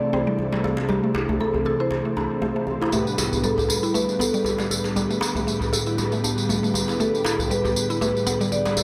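A tight, cracking djembe sits up front in this driving, spiritual afro house excerpt, under a woody soft-mallet marimba melody, an airy, ethereal pad holding sustained chords, dark, brassy synth stabs, and percussive FM synth-pluck arpeggios with chorus and phaser, while a jingly, vintage tambourine joins at 2.9 s and dub echo soaks the mix over a moderate plate reverb.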